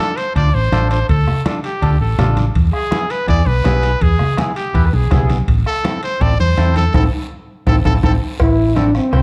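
Fiery and danceable, this cumbia excerpt sets a bright, vibrato-laden trumpet melody over a twangy, slightly broken-up electric guitar with harmonic tremolo, a round, punchy hollow-body bass up front, a soft-beater bombo, thick-skinned congas, ringing timbales and cowbell, and a raspy guiro in the background, with a band accent and drum fill before a mellow, close-miked trombone enters at 8.4 s, within a dark production touched by light reverb.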